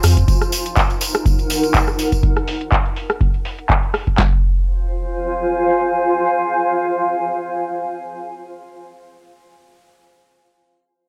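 A moderate plate reverb gives this short acid house cut a digital sheen, with the trippy, raw mood set at 123 BPM in 4/4 with a light swing on the sixteenths, in F phrygian. Two dry, booming analog drum machines sit up front: one carries a deep kick, a tonal snare and handclaps in a small room, while the other adds handclaps, a rim click and metallic hi-hats, its hats, snare, percussion and cymbals filtered low and swept through a filter until 4.2 seconds. A jingly, bright acoustic tambourine shakes along in a small room for the first 2.2 seconds. Above them, a mellow, blurred granular cloud pad built from wave-folded triangle voices in unison swells in slowly, sustains with a long release and its own reverb, and pumps against the sidechain as it evolves until 8.8 seconds. The harmony moves from Ebm to Fm as the music shifts into its second section, leaving the pad's hazy wash to carry the close.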